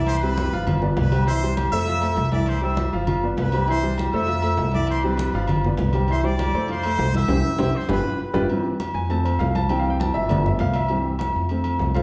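The upright piano sits up front with a woody tone and long sustain, comping through this joyful, danceable salsa at 200 BPM in C major before taking a solo from 8.5 seconds to the close of the fragment. Beneath it, a pizzicato upright bass on gut strings gives a dark, thumpy low end, while the harmony cycles through C, G7 and F. A tight trumpet section carries the melody with a bright pop-style sound and light vibrato, dropping out at 8.4 seconds. Ringing metal-shell agogo bells and timbales drive the percussion alongside thick-skinned congas played with hard hands, set back in the background. A drum fill and a band accent arrive together at 7.3 seconds, and a recital-hall reverb gives the whole ensemble a spacious, churchlike glow.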